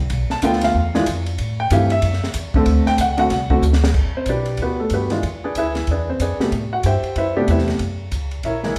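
Jazz piano trio in a moody, swinging vein, this short excerpt is cut from a longer piece and moves at a brisk pace with a swing feel. The upright bass opens at 0.0 seconds, plucked with a woody, thumpy tone from steel strings, and a compact cocktail drum kit joins at 0.1 seconds, its dry, acoustic sound built on dark cymbals, a high-tuned snare and a punchy kick, with hi-hat, ride and crash in the mix. A baby grand piano carries the melody from 0.3 seconds, present and up front with a warm voice, and takes a solo through the opening passage over chords moving from Bm7b5 through Am7 and D7. A short drum fill at 3.6 seconds leads into a new section at 3.9 seconds, where the harmony settles on a rootless Em9 and passes through E7b9, Am9 and F#7. The trio sounds like a band playing live in one room, wrapped in a large, wet studio reverb.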